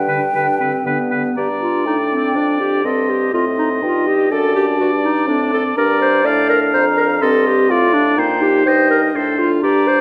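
Heard in a moderate recital-hall reverb, this quick, graceful and spirited classical-period movement for wind quintet in G minor moves at 123 BPM in a rubato 3/4, with an airy, hollow concert flute singing the tongued melody with vibrato, a clear vintage-toned oboe on the second line, a classical-style clarinet and a dark, soft-attack French horn filling the accompaniment, and a mellow bassoon anchoring the bass, as the harmony turns from G major to G minor at 1.4 seconds.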